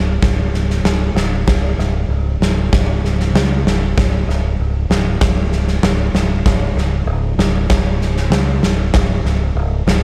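Post-rock with a cathartic, brooding mood, moving at a steady 96 BPM in a straight 4/4 and tuned slightly below standard pitch. A growling fingered electric bass opens the clip at 0.0 seconds, its bright, overdriven tone sitting up front in a low register from C#1 to C#2. A big rock drum kit joins at 0.2 seconds, its dark, smooth acoustic sound carrying the resonance of a big room, with a punchy kick and a medium-tuned snare. Both parts hold the foreground at an equal level, the bass's direct, amped punch set against the drums' big-room sound. A light reverb surrounds the mix, and the clip is cut from a longer piece, running to 10.0 seconds.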